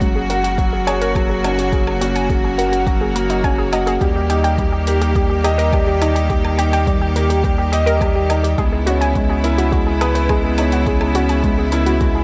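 This piano and strings electronica piece is intimate and hypnotic, built on a woody upright piano riff with tape echo. Around it sit a biting, bowed string section holding sustained chords, a lo-fi, detuned pluck that warbles through arpeggios with chorus and tape echo, and a round sub bass; strings, pluck and bass all pump to the sidechain. An overdriven electronic kick, hi-hat and woodblock, re-recorded in a small room, keep time as the harmony moves from F# to D# and on to C#m7 under light digital reverb.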